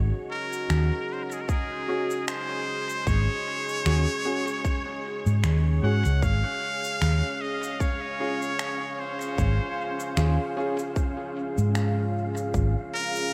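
A deep, moody ambient pad with chorus and 12-bit sampler grit opens this hazy, peaceful ambient dub excerpt at 76 BPM in Ab mixolydian, moving from Ab7sus4 to Db/Ab, alongside a round, dark hollow-body electric bass placed up front. A nasal, straight-muted trumpet carries the solo melody with vibrato and dub echo, while electronic cabasa and finger snaps with their own echo and a tight electronic kick from 1.5 seconds keep a lightly swung groove, and a woody, slightly detuned upright piano adds gritty, echoing stabs in the background. From 7.6 seconds an airy, breathy wind-like texture drifts in beneath everything in a light reverb.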